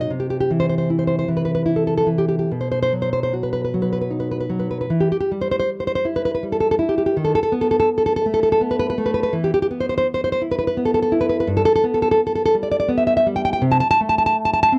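In a rubato 3/4 that drifts between 70 and 86 BPM, this short cut from a longer romantic piece for solo classical guitar unfolds in E minor with an intimate, melancholic mood. A single nylon-string guitar carries everything from 0.0 to 14.8 seconds, fingerpicked and up front, its tone dark and woody with the character of old strings. Ranging from G2 up to A5, the playing moves through a chord sequence of C, B, Em, B7(no3), E5, G69 and Am/C, with the phrase beginning again at 4.9 seconds. The close, dry sound evokes a 1970s-style studio, with just a small room ambience around the instrument.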